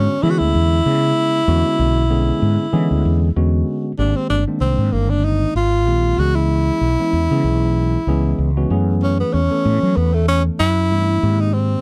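A breathy tenor saxophone takes the lead from the opening moment, carrying a clear, soft-attacked solo line with scooped notes over a clean tine electric piano and a round fretless electric bass. This is bright, soaring electric jazz fusion at 95 BPM in 4/4, with a light swing on the sixteenth notes. The saxophone sits close-miked and up front, its jazz phrasing moving between A3 and F#4. The electric piano supplies the accompaniment through its built-in speakers, voicing rich chords that begin on E13 and move through G#maj9, C#m7 and F#m11 as a second passage opens at 4.0 seconds. Beneath it all, the dark, direct-amped bass holds the low end prominently, ranging down to G1. The dry, close sound recalls a 1970s studio session, and the clip ends at 11.8 seconds, cut from a longer piece.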